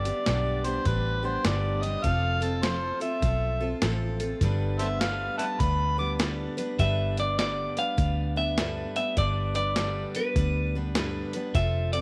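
Easygoing and sunny, this honky-tonk and classic country excerpt sits at 101 BPM in G mixolydian with a swung 4/4 feel, opening on a gritty, overdriven harmonica solo with light vibrato, tongue slaps and scooped notes that runs until 6.1 seconds, over a bright, full-bodied picked acoustic guitar and a dark, round, foam-muted electric bass. A compressed, pitched-down sampler-style drum kit adds a thumpy kick, a high-tuned snare and hi-hat with a tape-tinged character, while the chords move from G to F and back to G. At 6.8 seconds a clean, twangy electric guitar takes the melody up front, all set in a light reverb.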